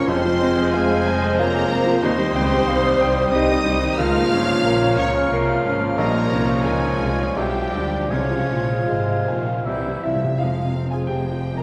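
In a rubato triple metre, this brooding, tragic romantic excerpt for piano and orchestra sets an up-front, open-toned baby grand with long sustain alongside lush bowed violins carrying the melody. A second violin line, an airy flute, a mellow clarinet and a dark, distant cor anglais weave secondary lines in the background, while clear violas and a very quiet bassoon fill the accompaniment, a warm horn section holds sustained chords, and rich vibrato cellos with smooth, even double basses anchor the bass in a wet concert hall reverb. Very quiet, close and dry timpani enter at 8.1 s and add a fill at 9.7 s before the harmony settles back on F minor at 10.4 s.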